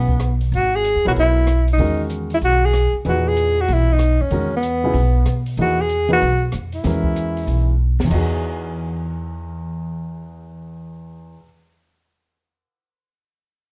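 Modal jazz at a swinging 190 BPM in E lydian, open and searching, this excerpt opens on an Emaj9 with a breathy, close-miked alto saxophone melody up front, whispered and intimate with vibrato and scooped notes, over a grand piano with audible action noise and short sustain, a woody pizzicato upright bass on steel strings, and a small-room drum kit sitting low with dark cymbals, a high-tuned snare and a boomy kick, whose fill at 7.8 seconds follows the saxophone's exit as piano and bass play on past the turn into a new section at 8.1 seconds, all under light reverb.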